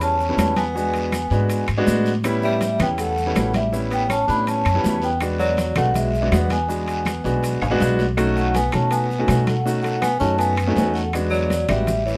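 Lightly reverberant and marked by lossy compression artefacts, this excerpt of sophisticated, danceable Afro-Cuban jazz moves at 162 BPM in a straight 4/4 in E mixolydian, cycling through A9, E9 and B9 chords. A metallic, ringing vibraphone with slow motor vibrato carries the melody over a close-miked tenor saxophone second line with scooped notes, while an intimate concert grand piano with audible action noise and a growly, steel-strung pizzicato upright bass sit up front. Bright, damped congas, metal-shelled timbales, woody claves and grainy maracas sit in the background, a raspy, band-limited guiro adds texture, and a drum fill arrives at 7.6 seconds.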